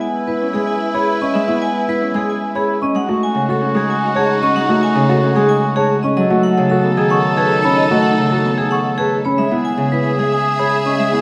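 In a straight 3/4 pulse, this urgent, hypnotic minimalist pattern piece sets a metallic, bright vibraphone struck with hard mallets and fast motor vibrato as the melody, with a classical-style oboe with light vibrato carrying a second line beneath it. An up-front, fingerpicked Celtic harp provides accompaniment alongside long-sustaining grand piano arpeggios and smooth bowed sustained chords from a rich studio string section, while sweet, bell-like celesta arpeggios enter at 0.9 s. The harmony shifts from C#m7 through D#m7b5/C#, B9/C# and Emaj7/C# in a wet recital-hall space, in a passage cut from a longer work.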